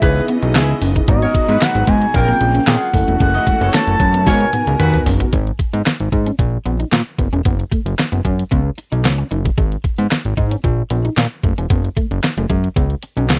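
A dry, close, seventies-style studio sound frames this funky, late-night slice of early-eighties boogie funk, where a smooth, vibrato-laden synth lead carries the melody over a tight horn section in octave doubling, a punchy, filter-plucked polysynth comp, a very quiet brassy, warbling pad, a dark, slightly broken-up guitar riff, a fat, saturated analog bass and a thumpy, detuned 8-bit drum machine with handclaps, until a drum fill at 4.3 seconds leads into a sparser passage from about 5.3 seconds carried by the guitar, bass and drums alone.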